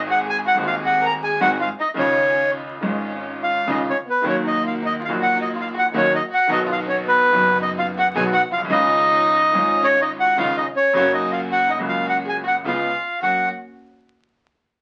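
Heard through the crackle of a very old 78 rpm record in a moderate studio room, this playful, elegant tango excerpt moves at 107 BPM in 4/4 with a rubato feel, in F# major. A reedy bandoneon sits up front carrying the melody, while a bright, polished upright piano with short sustain provides accompaniment and a bowed violin, earthy and biting with light vibrato, adds a quieter second line. Behind them, a dark chamber string section plays soft-attacked sul tasto stabs and a woody pizzicato upright bass anchors the low end, with the harmony settling back on F# at 13.2 seconds.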